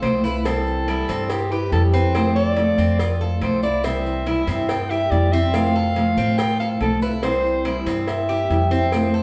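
Cuban son and guajira at 142 BPM in C major, relaxed and warm: a breathy, whispered soprano saxophone carries the intimate melody with light vibrato over a boxy, fingerpicked parlour steel-string guitar with audible finger squeak, bright metallic arpeggios from the double-strung Cuban tres, and a thumpy gut-string upright bass plucked up front, while a tight high-tuned cowbell, very quiet woody claves and grainy background maracas tick along as C and F alternate beneath, all set back in a large, wet studio reverb in this 9.2-second cut from a longer piece.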